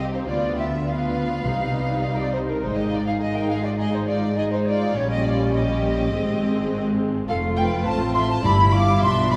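A dramatic, urgent, quick classical-period orchestral passage played with rubato opens with a rich, focused violin section carrying the melody, while a hollow, airy flute group and a second smooth-topped violin line play above it, smooth vibrato violas fill the middle, dark soft-attacked French horns hold chords in the background, even-toned cellos and lush double basses bow the bass, and calf-headed timpani on medium mallets sound at 1.5 s and again at 8.4 s, the orchestra heard from further back in a wet, reverberant space.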